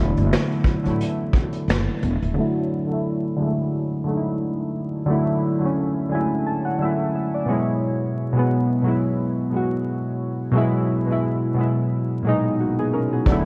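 Warbling lo-fi synth keys carry this cosy, mellow lo-fi hip hop excerpt at 88 BPM with a swung 16th-note feel in E mixolydian, their chorused pulse-and-sawtooth tone moving from E9sus4 to F#9sus4 under a filter sweep. A woody, thumpy pizzicato upright bass and a brushed vintage drum kit with finger snaps, a punchy kick and sampler grit join at the start, then drop away at 2.4 seconds, leaving the keys alone, with a brief fill, until the bass and drums return at 13.3 seconds. A small room reverb and worn cassette tape with vinyl crackle and pitch drift give the whole a nostalgic haze.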